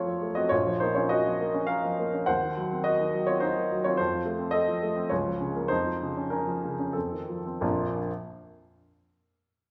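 Bathed in a wet recital-hall reverb, a warm, present, up-front baby grand piano plays alone from 0.0 to 8.1 seconds in this short cut from a longer romantic character piece, a stormy yet bittersweet Bb minor passage in 3/4 with a rubato feel between 86 and 110 BPM that slows from 3.1 to 7.6 seconds as the harmony moves through F, Bb minor and a diminished chord to F7 before landing on a Bb major chord.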